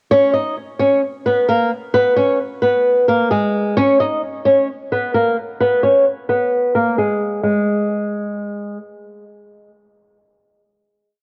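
Set in a half-time 4/4 feel at 131 BPM, this melancholic, hard-hitting trap piece in G# minor is a complete work built on a single fingerpicked flamenco guitar. The guitar sits up front, with a fresh-stringed acoustic tone doubled in octaves, and repeats its looping melody like a sample over A#madd11, G#m, D#5 and G#madd9. A filter sweep runs through the breakdown until 7.4 seconds. Light reverb, studio ambience and the low-pass haze of a home cassette recording soften the sound as the guitar carries into the final note and stops at 8.8 seconds.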